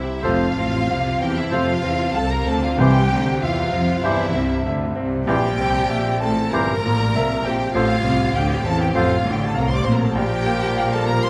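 A clear grand piano sings the melody up front from the start, joined by a dark, lush violin section on the same line, while an airy, hollow flute group and a second violin section with portamento weave a countermelody over a very quiet, smooth viola accompaniment. This lyrical, passionate romantic passage for piano and orchestra in F major moves at 97 BPM with a rubato feel. From 0.2 s oboe and clarinet add solo lines, and a warm bassoon joins the accompaniment above a tight, hushed French horn section holding sustained chords and a focused cello and distant double bass foundation. Round, soft-mallet timpani sound briefly at 2.8 s, and a moderate concert hall reverb gives the short cut from a longer piece a spacious bloom.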